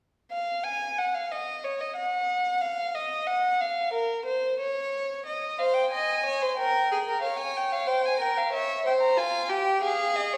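Contemplative and serious, this short passage cut from a longer classical piece is a baroque-style fugue for string quartet in a steady, straight 4/4. A warm violin carries the melody from 0.3 s, its bowed line shaped with vibrato, soft attacks, portamento and an expressive, close presence. At 5.6 s a second violin joins with a rich, smooth and even second line, also with vibrato, though it sounds more distant. The harmony moves from Fm through Gm7b5 and C7 back to Fm, giving the counterpoint a grave, searching quality. The pair sits in a wet recital hall reverb, heard from further back in the room, with the tuning set at A4 = 435 Hz.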